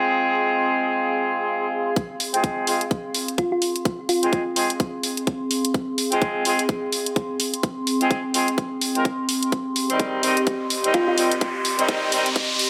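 Set in a moderate, lush hall reverb with a digital ambience, this swaggering, gritty bass house excerpt in F minor at 127 BPM, with a swung 16th feel, opens with clear, up-front horn stabs under a filter sweep, pumping against a nostalgic, lo-fi pad with chorus. At 2.0 seconds a tight, tape-warm kick and layered electronic hi-hats enter as the build-up begins. At 3.4 seconds a round, tine-like thumb-piano pluck with delay sounds briefly on a single note, returning for a moment at 10.9 seconds. A drum fill arrives at 9.5 seconds as the harmony moves from F minor to C minor, and an electronic riser joins at 10.7 seconds.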